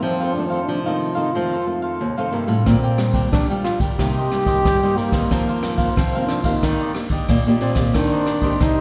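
A straight, even samba-and-choro groove carries this nostalgic yet lively fragment, cut from a longer piece, with a brushed jazz kit entering at 2.7 seconds to add a boomy kick, rim clicks and dark ride cymbal, sitting airy, polished and up front. Over it a mellow trombone sings the solo melody in a jazz style, its soft attack, scooped notes and gentle vibrato giving the line a smooth top. A crisp, picked cavaquinho fills out the accompaniment alongside a small, warm fingerpicked nylon-string guitar. A second nylon-string guitar holds down the bass in the background, its bright classical fingerpicking marked by audible finger squeak. The harmony drifts from F7 through Bb6, Cm7 and F7sus4 to Ebmaj7, all bathed in a moderate concert-hall reverb that lends the ensemble a spacious, reflective glow.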